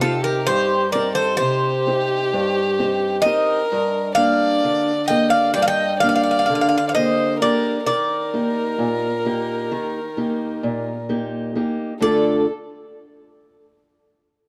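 A straight 9/8 pulse at 130 BPM counted in eighths carries this melancholic, wistful Greek folk piece in D phrygian, cut from a longer performance. Up front, a bright, metallic bouzouki with double strings carries the melody while a single violin, played sul tasto with a soft attack, airy bow and light vibrato, traces an intimate second line, and a boxy parlour steel-string guitar, fingerpicked, gives dark accompaniment. All three play together from 0.0 to 12.4 seconds over a harmony moving from Cm through Gm and Eb to Dm at 12.0 seconds, in a dusky production softened by a moderate plate reverb.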